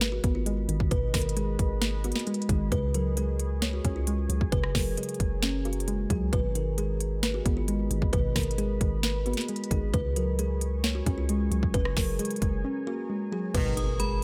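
A woody, thumbnail-plucked kalimba melody opens over a soft, detuned pluck, a long sine 808-style bass and a trap drum kit with a hard-clipped kick, sharp snare and crisp hats, all set in a brooding, hard-hitting half-time groove at 133 BPM in G# dorian. A moody sawtooth ambient pad with a slow attack and chorus settles in quietly, while the chords cycle through G#m, C#sus4 and F#add9. After a break, smooth-topped classical brass stabs arrive at 13.5 seconds, followed by a barely audible electronic impact and a metallic, inharmonic FM bell line as this cut from a longer piece ends.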